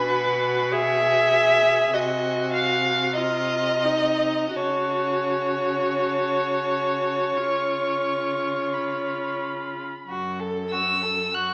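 In a slow, rubato 4/4 at 41-50 BPM, this melancholic, solemn excerpt from a romantic string quartet movement in F# minor sets a warm, smooth first violin melody high above a rich, up-front second violin line, a vibrato-laden viola accompaniment that falls away at 9.9 s, and a focused cello bass, all bowed by single players and heard through a wet recital-hall reverb with a small-speaker sound as the harmony settles on F#m at 10.1 s.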